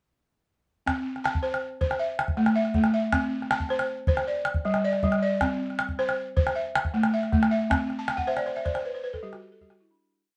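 Flowing and joyful, this short West African traditional piece moves at 105 BPM in a straight 12/8 in C lydian, with a woody, buzzing balafon played with rubber mallets spinning an interlocking ostinato of arpeggios and fast runs up front, a small, band-limited calabash keeping an evenly spread pattern close beside it from 0.9 seconds, moderate studio reverb around both, and a fade-out starting at 7.7 seconds as the balafon plays a closing fill from 8.0 seconds.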